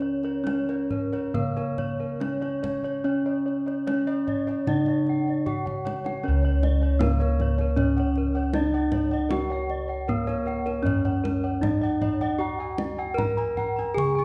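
Serene, ceremonial Javanese gamelan in C# pelog barang at 77 BPM with uneven beats, where a dark, smooth bronze metallophone rings the melody up front under a wooden mallet while a second metallophone, struck with a horn mallet, weaves shimmering arpeggios from its paired tuning; mellow, padded bossed gongs add round arpeggios above, a bright, airy set of bossed gongs carries the bass, and a deep, close kendang plays a fill from 5.5 to 6.2 seconds that ushers in a new section, all bathed in the lush reverb of a recital hall in a passage cut from a longer piece.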